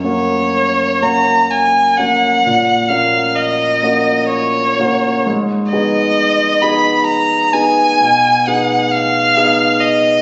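A single bowed violin leads this romantic classical duo, singing a lyrical line between C#5 and B5 with vibrato, soft attacks, expressive portamento and a close, up-front presence. A concert grand piano accompanies from F#2 to G#4, its tone warm and open with deep bass and long sustain, set a little beneath the violin in level. The pair move in a rubato 3/4 at roughly 59-68 BPM in F# major, tuned to A4 = 437 Hz, with the harmony passing from F# through F#/A# to G#m and G#m/B. Both instruments play throughout this 10.2-second fragment of a longer piece, which has a lyrical, warm mood. A moderate scoring-stage reverb of about 1.9 seconds surrounds them, and the phone capture in the room leaves the top end dull, with nothing above 7.7 kHz.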